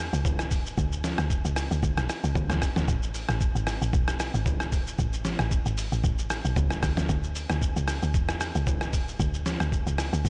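A woody, punchy log drum bass opens this relaxed, soulful amapiano fragment in A major at 114 BPM with a light 16th-note swing, joined at 0.1 s by an up-front, sampler-style trip hop kit that is gritty, compressed and pitched down, with a thumpy kick, medium-tuned snare, rim click, hi-hat, shaker and toms, all in a dry mix with dulled highs.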